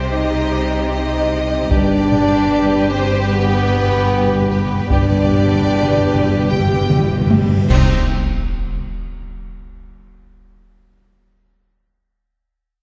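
Mellow, distant French horns hold sustained chords over lush vibrato violins carrying the melody and a smooth second line, rich violas, very quiet trombones, a bright, focused cello section and woody double basses in this dark, dramatic cinematic orchestral excerpt at 75 BPM, moving from C minor to G as saturated, compressed taiko drums and articulate hard-mallet timpani enter at 1.7 seconds, bright cymbal swell, clash cymbals and concert bass drum join at 4.9 seconds, and a huge but very quiet reverse cymbal and sub drop lead into a band accent and impact at 8.1 seconds, all set in a moderate concert hall reverb.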